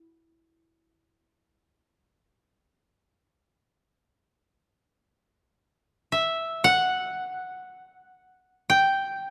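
A moderate concert-hall reverb, about 2.2 seconds long, surrounds a single koto that sits up front in the sound. This brief fragment of Japanese traditional chamber music is meditative and austere. The koto plays alone from 0.0 to 9.3 seconds, plucked with fingerpicks, giving a bright, woody and dry tone. Its line stays in a narrow upper band from E5 to G5, tuned slightly above standard pitch at A4 = 441 Hz. The same passage is heard twice, with the repeat beginning at 4.7 seconds, before the recording cuts off mid-piece.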